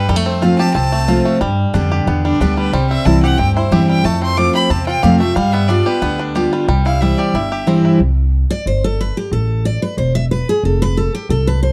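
A dry, close 1970s-style studio recording captures a lively, virtuosic bluegrass excerpt in C major at 182 BPM, where a biting fiddle with light vibrato carries the melody and a twangy fingerpicked banjo plays arpeggios until about 8 seconds, the growly pizzicato upright bass and full-bodied dreadnought guitar sit up front throughout, and the guitar then takes a solo from 8.0 seconds, its finger squeaks audible.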